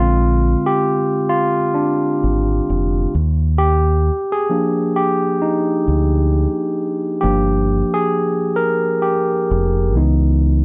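Smooth and introspective, this brief neo-soul R&B excerpt sways at 66 BPM with a swung sixteenth-note feel, as a bright, barky tine electric piano, lightly overdriven through a combo amp, takes the lead over chords moving from Bb7 to Dbm9, while a deep, round, punchy fingered dub bass sits up front in a dry, close 1970s-style studio sound touched with digital ambience.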